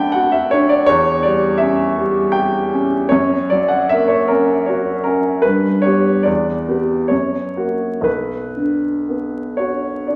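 An up-front, woody upright piano plays alone across this short excerpt of a mournful, wistful romantic nocturne in B minor, moving in 3/4 with a free rubato feel that drifts between 58 and 84 BPM over a range from B1 to B5. The harmony passes from D/F# through C#dim/E, F#, G and Em7, then back to F# before settling on Bm at 8.1 seconds. A wet recital-hall reverb surrounds the natural piano tone, and a vinyl crackle sits beneath it.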